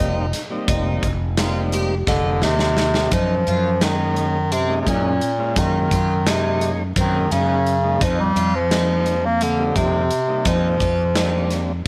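Progressive instrumental band music in 7/8 with a straight feel, this short excerpt cut from a longer piece sounds driving and intricate. A shimmering, octave-doubled twelve-string acoustic guitar picks bright arpeggios throughout, with an audible finger squeak, while a thick tonewheel organ, lightly overdriven and turning through a slow rotary speaker, fills in the background. Up front, a growly fretless electric bass carries the low end with a subtle chorus, and a big rock drum kit with a punchy kick and a medium-tuned snare enters at 0.3 seconds. A drum fill at 2.1 seconds coincides with the entrance of a clear, present bass clarinet, which takes the melody in a classical style as the solo voice. The harmony moves from F7sus4 to Gb6 at 3.1 seconds and back to F7sus4 at 8.0 seconds, all set in light reverb.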